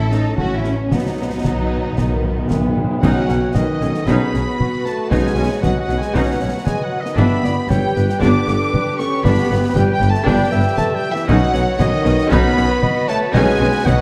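Heroic adventure film score at 116 BPM in B mixolydian, triumphant in mood, with a dark, vibrato-laden violin section carrying the melody over lush background violins and intense violas, smooth-topped French horn chords, a clear but very quiet cello section, a close double bass section, concert snare, bass drum and bright-cymballed clashes, and timpani struck with hard mallets in a fill from 0.9 to 3.0 seconds before a roomy oboe, a solo clarinet and a mellow background tuba join at 3.0 seconds, all on a moderately reverberant scoring stage with a dark production.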